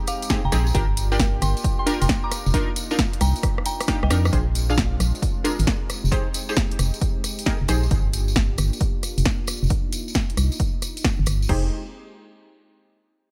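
Skippy and soulful, this UK garage cut rolls along at 134 BPM in F dorian, its two-step groove swung on the sixteenths over a Fm7, Gm7 and rootless Cm11 cycle that passes through Bb7. An organ-like FM bass, hollow and dark with a fast, decaying attack, sits up front beside a punchy, tape-warm electronic kick, while a layered house drum kit adds crash cymbal, hi-hat, rim click and snare, with a jingly, close acoustic tambourine on top. A soft, pure FM bell carries the melody through the opening drop, with chorus and tape echo, until a drum fill from 3.4 seconds leads into the next section at 4.3 seconds, where it falls away. Warbling, vintage chord stabs built from detuned sawtooth and pulse waves pluck brightly with chorus and dub echo until 7.8 seconds, returning briefly at the very end. Underneath, a smooth, slow-attack analog pad holds sustained chords with sidechain pumping and moves through a filter sweep from 4.3 to 11.5 seconds, all in a dry mix.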